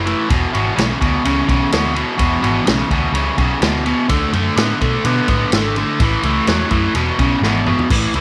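A biting, double-tracked overdriven guitar riff sits up front from the first second alongside a dark, round, foam-muted picked bass, with a vintage acoustic drum kit of dark cymbals, a medium-tuned snare and a punchy kick joining them in this raunchy, swaggering blues rock power-trio and southern rock passage at 126 BPM, which moves from E5 through D5 and A to E in a dry room before a drum fill at 7.4 seconds, cut from a longer piece.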